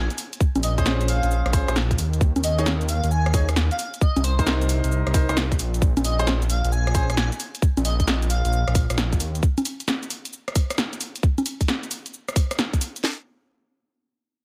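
UK garage in a two-step style, this skippy, bouncy excerpt from a longer piece opens straight into a drop, with its sixteenths swung hard. A dark, detuned saw bass rumbles up front with tube saturation, its deep, beating tone holding the low end until about 9.4 seconds. Two drum parts drive the groove: a garage drum kit with a tight kick and a cracking snare, and a punchy analog drum machine, re-recorded in a large room, that scatters cabasa, congas, hi-hat, rim clicks and snare until 13.0 seconds. Above them, a soft, airy lead with chorus, vibrato and digital delay floats a dreamy melody, while a grand piano with audible action noise and a boxy, intimate character adds delayed stabs. The harmony moves through minor-ninth, suspended and seventh chords before dropping out at 9.2 seconds, and the whole mix sits in a digital ambience.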